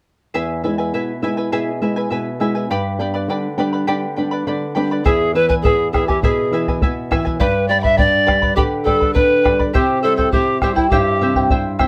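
A straight 2/4 pulse at 102 BPM carries this festive yet melancholic Andean folk excerpt, where a shimmering, fingerpicked charango with double strings and a dark, thumb-plucked flamenco guitar set out the E and G chords together from 0.3 seconds, before a bright, reedy pan flute with vibrato and crisp chiff takes the melody up front at 5.0 seconds and a deep bombo joins at 5.1 seconds, all in a small room with moderate reverb.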